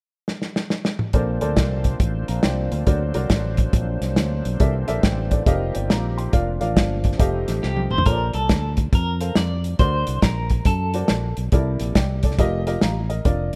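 A bright, reedy tonewheel organ with fast rotary speaker and light overdrive holds sustained chords over a tight, up-front soul drum kit, round fingered bass and a woody, slightly detuned upright piano in this reverent, soulful uptempo gospel swing excerpt, where a clean, picked electric guitar carries a tremolo-tinged melody from 7.6 to 11.3 seconds, entering together with a drum fill, all in a rough home demo mix with small room ambience.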